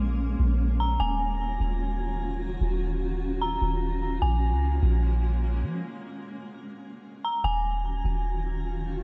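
A half-time 4/4 groove at 149 BPM carries this ethereal, hazy cloud-rap excerpt in Eb minor, moving between Bbm7 and Ebm9 with a stop from 5.8 to 7.4 seconds. A deep, round 808-style bass sits up front under a blurred, evolving granular pad with built-in reverb, while a dark detuned synth bell plays an eerie, inharmonic melody through chorus and tape echo from 0.8 to 8.2 seconds. The production feels warm, with light reverb.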